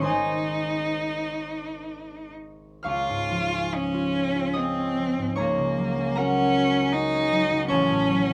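A rich, focused bowed cello carries a lyrical melody with vibrato in this serene romantic classical duo, flowing in an unhurried rubato three-four. A ringing concert harp, plucked by the fingers, supports it with accompaniment spanning a broad register, moving from Ab through Db and Gb/Db to Gbm/A. Both instruments sit up front, captured by close, detailed microphones with light reverb, in this 8.3-second passage cut from a longer piece.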